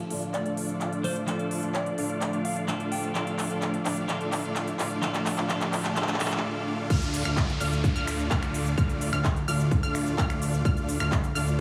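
Festival progressive house with a euphoric, anthemic lift, where a twangy twelve-string electric guitar with warbly pitch drift and a very quiet lush pad open, soon met by a thick, detuned supersaw riff under a low-pass filter sweep, a round FM lead in the background and crisp, overdriven drums through a build-up and drum fill, before a break at 6.4 seconds gives way to a drop at 6.9 seconds where a punchy overdriven kick drives a fat analog bass and detuned unison pluck arpeggios that pump under sidechain in a huge ambient reverb.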